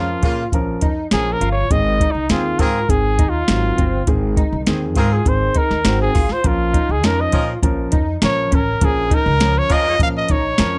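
A straight 4/4 pulse at 101 BPM from a soft vintage rhythm box, with its deep kick, crisp snare and metallic hats, drives this urgent, uptempo 1960s-style soul cut in Bb minor, where a punchy, forceful trumpet solo with light vibrato and scooped notes sits up front over a distant, tight horn section, a baby grand piano in plate reverb, a woody pizzicato upright bass on gut strings, and a slightly broken-up, lo-fi electric guitar riff through analog chorus, as the chords move from Bbm to Ab and back to Bbm at 6.4 seconds.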